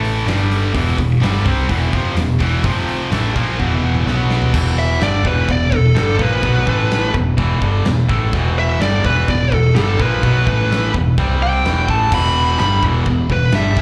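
Aggressive and relentless, this heavy metal passage in E minor charges along at 126 BPM, captured live through a venue's PA with light club reverb. A bright, high-gain rhythm guitar and a tight, up-front distorted guitar with slapback echo share the riff, while a round, amped hollow-body bass and a big-room drum kit with a fat snare, tight kick, china and crash cymbals hold the low end; the heavier guitar drops out at 4.5 s after a drum fill. From 4.8 s, a dark, high-gain lead guitar takes an up-front solo coloured by slapback and tape echo, running to the end of this cut from a longer piece.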